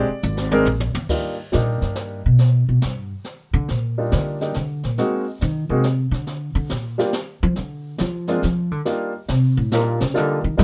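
A lilting three-beat swing drives this short jazz piano trio fragment, cut from a longer piece, with a warm, swinging mood. It opens with a brief piano solo while the brushed drum kit slips in at 0.2 seconds with a fill. At 1.1 seconds the upright bass takes over with a solo that runs to the end, its plucked gut strings sounding thumpy, woody and up front. The upright piano carries the melody throughout with a polished, present tone, moving through lush jazz harmony such as Ebmaj7, Ab9, Gm7 and a closing Ebmaj9. The brushed kit sits further back, with dark cymbals, a high-tuned snare and a boomy kick that give it a natural small-room character. The trio is recorded dry, giving the whole a warm, intimate feel.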